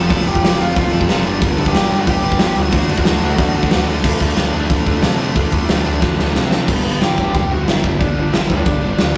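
A loud, energetic punk rock passage cut from a longer piece opens at a driving 182 BPM in straight 4/4, with a dark, overdriven lead guitar through a small cranked amp carrying the melody over a thick stack of riffing guitars. Underneath, a bright, compressed distorted electric guitar sits in the background alongside a very quiet double-tracked high-gain guitar and a slightly stronger but still very quiet sludgy, overdriven guitar that drops out at 6.7 seconds. A growling picked bass, overdriven and heard both direct and amped, rumbles beneath, while the big acoustic drum kit sits up front with a fat snare, punchy kick and crashing cymbals in a bright stone room. The harmony moves from F through G5 and D to D5, and after a drum fill the music shifts to G at 6.7 seconds, the lead guitar having returned just before for the final stretch. The whole thing has a rough rehearsal-room feel, with tube saturation and light reverb adding to its rebellious edge.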